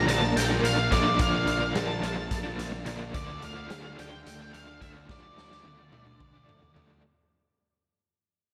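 A dreamy, reverb-soaked mix opens this short, fading cut from a longer psychedelic rock piece, its lush hall wash lending a mysterious, dark cast to a brisk 216 BPM pulse counted in eighths in an uneven 7/8 with a straight feel. A double-tracked, crunchy overdriven guitar carries the riff in the low-middle register with tremolo, while an up-front fuzz picked electric bass, overdriven and amped, anchors the bottom. Over them, an octave-fuzz lead guitar sings a dark, distorted melody through tape echo, stopping at 6.7 seconds. Far beneath, a very quiet symphonic string section holds bowed, vibrato-rich chords with a smooth top. A raw garage drum kit in a bright stone room, with a punchy kick, medium-tuned snare, hi-hat and toms, rolls into a fill from 5.1 seconds. The harmony moves from Bbmaj7 to Dm at 3.1 seconds as the whole passage fades out.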